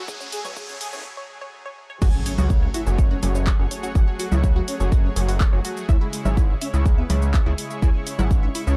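A punchy, layered electronic kick sits up front in this dark, melancholic melodic techno passage, cut from a longer piece, joined by a gritty, saturated synth bass with an aggressive sawtooth bite, oscillator sync and ring modulation. The opening two seconds form a build-up, with a riser, a filter sweep and a brief break before the drop lands at 2.0 s with an impact. A tape-warm analog drum machine, re-recorded in a small room, adds congas, shaker, handclaps, hi-hat and crash, its percussion, hats and cymbals pumping against the sidechain. In the background, a round, dark synth brass carries the melody with chorus, vibrato and digital delay, while a smooth, evolving supersaw traces a second line above it. A thick, warbling vintage pad holds slow-blooming chords, a bold, bright analog pad punctuates with stabs, and a detuned unison pluck with a moving notch spins arpeggios through delay. 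Chords move from Esus4 to F#madd9 and then C#m, all set in a filtered digital ambience.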